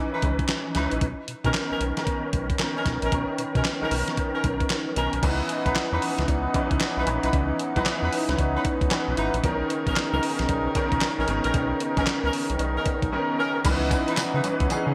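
An intimate concert grand piano sits up front with audible action noise, tube saturation and ensemble chorus, comping on C#m9 and Bmaj9 chords in this punchy, confident new jack swing excerpt at 114 BPM with a 16th-note swing in C# dorian. A gritty sampler-style kit with a thumpy kick, fat snare, hi-hat, handclaps, tambourine and crash drives it through gated reverb, while a round, dark analog bass holds the low end and a distant, roomy horn section adds jazz-style stabs through delay in the background. At 5.2 seconds a reedy, breathing pedal harmonium enters with sustained chords alongside a very quiet metallic cowbell, all set in a bright 1980s-style digital production with a wet plate reverb.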